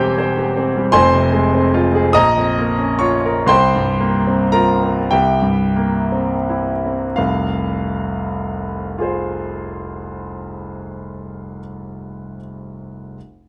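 A clear, intimate grand piano opens alone on a C7/E chord and settles into F minor, playing a yearning, wistful romantic nocturne in 6/8 with free rubato, its dotted-quarter pulse moving between 26 and 53 BPM and slowing through the first 7.2 s. The harmony passes through Bbm, C7sus4 and C7 before returning to Fm at 7.2 s, where a new passage begins, the piano spanning E1 to Bb6 with long sustain and audible action noise. Sitting up front in a dark production with moderate studio reverb, this short passage is cut from a longer piece, tuned to A4 = 441 Hz.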